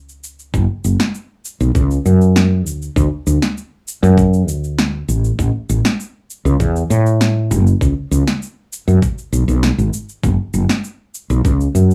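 Smooth and warm, this sunset chillout piece, cut from a longer track, moves at an easy 99 BPM in 4/4 with a straight feel in F# minor, tuned to A4 = 442 Hz. A woody fretless electric bass carries the low end from the very start, ranging from F#1 to A2 with a dark, growly, round tone, sitting up front and thickened by tube saturation. At 0.1 seconds an electronic cabasa and snare drum kit joins, layered and produced, its punchy snare overdriven and placed forward in the mix. A sampler-style electronic kick drum enters at 0.5 seconds, compressed and thumpy with a gritty edge, carrying the air of a small room. The whole thing has the feel of a rough home demo, with light reverb and modest room ambience around the parts.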